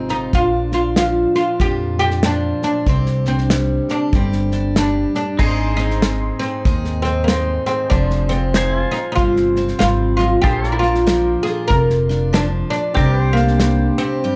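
Honky-tonk and classic country at 95 BPM with a lilting swing, lonesome and heartbroken, as a woody, plectrum-plucked oud carries the melody up front over bright picked steel-string acoustic guitar, thumpy pizzicato upright bass and a punchy small-room drum kit, joined at 5.4 seconds by twangy pedal steel chords and a very quiet, detuned, jangly upright piano, set in a dark production with light reverb.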